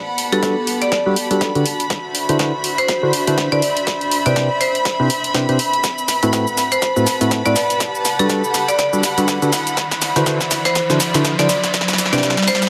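Piano house with a soulful, bittersweet mood and a swung sixteenth-note feel, this piece is cut from a longer track and plays as one continuous build-up, with a drum fill running throughout. Sidechain pumping breathes through a rich, earthy chamber violin section holding sustained chords from a distance, a dark studio string section adding an intimate sul tasto texture, and an up-front percussive organ stab whose hollow, wave-folded, chorused riff moves under a filter sweep. A hard-mallet marimba carries a bright melody through tape echo. An overdriven analog drum machine drives hi-hat, shaker and a punchy snare, with a dry electronic kick sitting further back. A riser enters at 8.1 s to push the lift higher. The harmony moves through Gmaj9, D13, Cmaj9 and Am69 under a moderate plate reverb.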